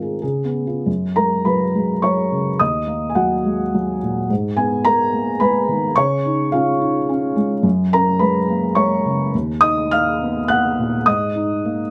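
A felt-muted upright piano plays alone, its thick-felted tone soft, dark and intimate, set up front in a moderate studio ambience with a rolled-off top end. This tender, hopeful neoclassical minimalist piece in F# major moves in a rubato 3/4 around 106 BPM, tuned to A4 = 439 Hz and reaching from D#2 to F#6. Cut from a longer work, it runs through chords such as F#sus2, D#m, G#madd9 and C#add9 before closing on G#sus2 at 11.1 seconds.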